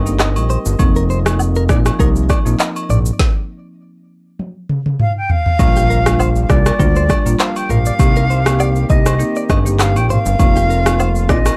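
A fat, saturated analog bass sits up front in this sunny, breezy afrobeats excerpt in Bb major, its detuned sawtooth and square-wave tone plucking through chords like Cm7, F7sus4 and Bb6 at 100 BPM with a gentle sixteenth-note swing. Beside it, an electronic afro-pop drum kit with a deep kick, woody snare and tape-warm character drives the groove with handclaps, rim clicks, shaker and toms. A rosewood marimba played with medium mallets adds plate-reverbed accompaniment, while a bright, clean, direct-recorded electric guitar picks a compressed riff through a delay. Woodblock and agogo bells ride dry and close in the background, and a very quiet, dark brass ensemble holds smooth sustained chords underneath. The band breaks into a stop at 3.2 seconds that ends with a drum fill; an airy, distant concert flute enters at 5.0 seconds with an expressive, tongued vibrato melody, and a faint electronic impact lands at 5.8 seconds in a lightly reverberant, dark production.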